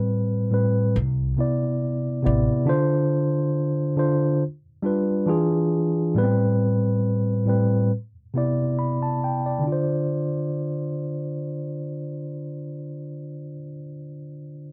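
A lazy 4/4 groove with swung sixteenths sets a slow, unhurried hip hop pulse in this melancholic, hazy fragment cut from a longer piece. A mellow tine electric piano carries the accompaniment throughout, its clean, direct tone sitting up front and colored by the soft grain of cassette tape. An acoustic upright bass, played pizzicato on steel strings, appears only briefly from 1.0 to 2.5 seconds, adding a woody, thumpy low end close to the listener. The harmony drifts through lush jazz chords such as Am9, Cmaj9, Dm7, G7 and a tense E7b9 before circling back, and a new section opens at 9.6 seconds on Dm7. Light reverb and a dark, warm production give the whole passage a dusky, late-night haze.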